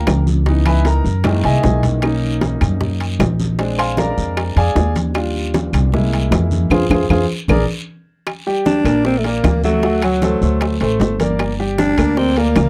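Afro-Cuban jazz excerpt at 154 BPM, sophisticated and danceable, where a clear grand piano solos over dark, thumpy pizzicato upright bass, ringing congas and timbales, round low-tuned bongos, woody claves and a raspy guiro, with drum fills and a band accent before a gritty, growling alto saxophone takes the melody at 8.7 seconds, all in a dry, close 1970s-style studio sound.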